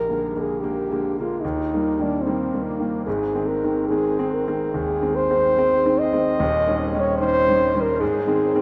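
Moving at a rubato 73 BPM in 4/4, this lyrical Romantic classical duo in Eb major lasts 8.6 seconds, a fragment cut from a longer piece. A mellow French horn with light vibrato and a smooth top carries the solo melody up front, while a vintage-toned grand piano provides warm accompaniment that reaches deep into the bass, moving through Bb7, Eb, Ab and Eb7 before settling on Ab. A huge, wet ambient reverb, with a decay time of 8.6 seconds, places the duo in a vast, echoing space.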